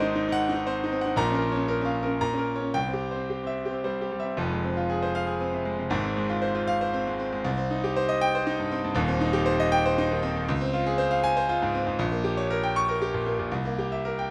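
Swaying in 3/4 at about 118 BPM with a free, rubato pulse, this classical virtuoso piano study in F minor comes across as passionate and agitated. A single concert grand carries everything, its tone brilliant and up front, reaching from a deep bass down at Eb1 to the top around Db6, with a smooth, vintage character. The brief opening section moves through Ab7, Bbm and C before the music settles into F minor at 4.4 seconds for a longer second passage. From there the harmony travels through Fm/Ab, Cm and Cm/Eb, then colors with Dbmaj7 and Gdim/Bb before arriving on C7 near 13.5 seconds, as this fragment of a longer piece breaks off at 14.3 seconds. Close, detailed microphones and a light reverb keep the instrument intimate and clear.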